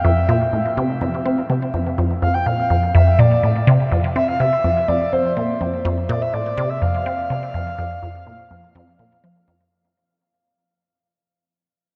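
A straight 4/4 pulse at 124 BPM drives this cosmic, luminous ambient passage in F major, cut from a longer piece. A squelchy, resonant blip pluck carries the riff from F2 to C4 with a snappy attack, phaser and delay, while a breathy, flute-like synth lead with vibrato, subtle chorus and delay sings the melody between C5 and G5. Both sit up front in a dark production bathed in a huge, wet reverb, and the passage fades out from 4.6 seconds to its close at 9.7 seconds.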